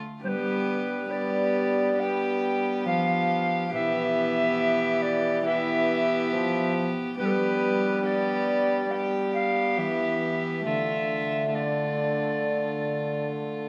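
A courtly, solemn Renaissance-style consort dance at 69 BPM in 4/4, this excerpt opens with a ringing concert harp set in the background, joined at 0.2 seconds by a single bowed violin carrying the melody in a gut-string period tone. A pure tenor recorder with a soft chiff sings the second line, while a nasal, airy-bowed viola fills out the accompaniment above a brilliant, roomy trombone bass. The harmony moves from G to E minor, back to G and then to D minor, all bathed in a wet recital-hall reverb.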